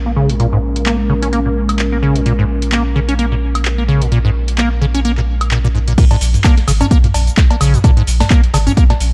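Acid house with a gritty, hypnotic mood, cut from a longer piece and set in a dark, warm production with digital ambience and a swung sixteenth-note feel. A detuned, ring-modulated analog pad holds sustained chords with a slow attack, chorus and sidechain pumping, ending at 5.9 seconds, while a round sine sub bass sits up front and pumps beneath it. A squelchy, resonant square-wave acid bass carries the riff, its filter sweep, tube saturation, subtle chorus and dub echo giving it a hollow, decaying bite. An analog drum machine fills out the kit with a crisp snare, metallic hats, cabasa, cowbell, crash cymbal, handclaps, toms and woodblock, all dry and darkened by low-pass filtering with studio reverb. At 6.0 seconds the drop arrives as a punchy, tape-warm electronic kick drum enters up front, and the harmony shifts from a minor seventh chord to a bare dominant seventh.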